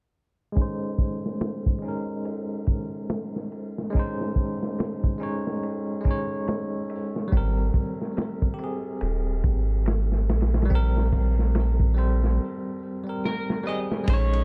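A dark, warm production in studio reverb frames this brooding, cinematic trip hop excerpt in Bb dorian at 71 BPM, with a 60% swing on the sixteenths and a Bbm11 chord giving way to Abmaj9 at 7.3 s. A bell-like tine electric piano carries the accompaniment with tremolo, tape echo and a filter sweep, over a crunchy, saturated breakbeat kit whose low-passed cymbals and hats sound rolled-off beside a punchy kick, while a deep, round dub sub bass enters up front at 7.3 s. During the break, as a drum fill plays, a slightly broken-up electric guitar through a small old amp picks a brief tape-echoed melody from 13.3 s.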